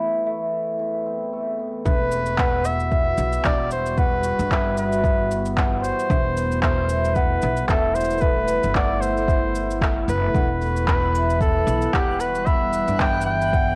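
Autumnal and wistful, this folktronica passage, cut from a longer piece, moves at 113 BPM in E minor with a gently swung sixteenth-note feel. It opens on a shimmering, ringing cimbalom playing arpeggios under a filter sweep, with a delicate, bell-like celesta carrying a second line through tape echo and a warbling, nostalgic pad holding dark sustained chords, before a brief break at 0.8 seconds. At 1.9 seconds the harmony settles onto E minor and the full groove arrives: a clear, punchy flugelhorn takes the up-front solo melody with light vibrato and scooped notes, over a woody, thumpy pizzicato upright bass. A deep, overdriven electronic kick drives the beat alongside overdriven electronic cabasa and handclaps, both re-recorded in a large room. From 11.0 seconds a faint, twinkling granular texture sparkles high in the background. The whole has the lo-fi grain of a home recording on cassette, with only light reverb around it.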